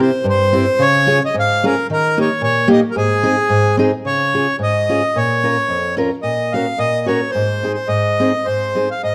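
A reedy accordion carries the melody up front from the first moment, alongside a fingerpicked steel-string acoustic guitar with fresh strings and audible finger squeak, also close and detailed. This jolly, festive alpine folk dance moves in 2/4 with a light swing and a rubato feel, played with the spirit of an alpine dance band. A second section arrives at 4.0 s, and the pair plays through a moderate recital-hall reverb until the clip, taken from a longer piece, breaks off at 9.1 s.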